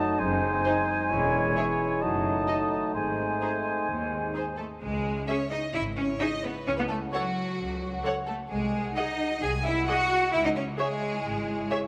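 In a straight 4/4 at 131 BPM, this C# minor film cue excerpt has a quirky, magical, whimsical character. A pure, silver-toned flute shares a cluster of second lines with a distant, roomy oboe and a mellow clarinet, over bassoon accompaniment and sustained French horn chords, until the winds and horns drop out at 4.6 s. Fingerpicked harp arpeggios ring quietly throughout, while a clear, up-front cello section and a smooth-topped double bass section carry the bass, and a lush violin melody with soft-attack vibrato sits in the background alongside a focused second violin line and viola accompaniment, all in the moderate bloom of a scoring-stage reverb.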